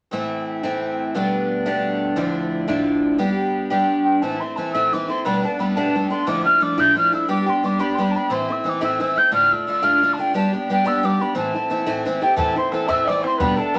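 A picked twelve-string acoustic guitar opens this short Celtic folk jig, its shimmering, octave-doubled chords sitting up front as it walks through A minor changes at 118 BPM in a straight 6/8. At 4.0 seconds a mellow, hollow wooden whistle enters with an airy, vibrato-laden melody pitched high above the guitar, its soft attack heard close. Near the end, a breathy soprano saxophone slips in with a whispered second line in a jazz-tinged style, sounding distant and roomy beneath the whistle. A damped, tight bodhran joins at 12.4 seconds, close and dry, adding a quiet pulse under the ensemble. The harmony moves between Am, Gadd9/B, Dmadd9 and G, later turning through Dm, and the whole passage carries a spirited, slightly wild energy, bathed in a wet studio reverb, as an excerpt cut from a longer piece.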